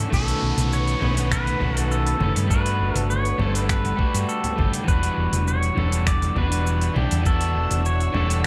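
A dark, lightly reverberant production frames this short, relaxed sunset chillout cut from a longer piece, moving at 101 BPM in a straight 4/4 in E dorian. A round, hollow-body short-scale electric bass sits up front, joined by a knocking, tape-warm electronic kick and a smooth R&B kit of finger snaps, metallic hi-hats and shaker. A slightly broken-up, picked electric guitar carries the accompaniment, while a silky vintage string machine holds mellow sustained chords in the background, colored by phaser and ensemble chorus. Above them, a clean, compressed pedal steel guitar sings the melody with fingerpicks, slide and volume swells, trailed by delay. Bright congas heard from a distant large room enter at 0.6 seconds, very quiet, and a downlifter sweeps underneath until 4.9 seconds as the harmony moves from B7 through Gmaj7 to Em9.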